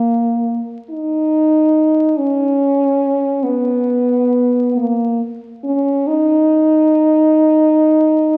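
A lone French horn opens at 0.0 seconds over the crackle of a very old 78 rpm record, sounding a yearning, lonely phrase in free time. This is a short classical fragment cut from a longer piece, and the solo horn carries it alone until it breaks off at 8.4 seconds. The horn's tone is mellow and present, placed up front, with a light vibrato that gives the line an expressive, searching quality. Its melody stays in a low, narrow compass between A#3 and D#4. A wet recital hall reverb lingers around each note, and together with the aged surface noise it lends the moment a distant, nostalgic character.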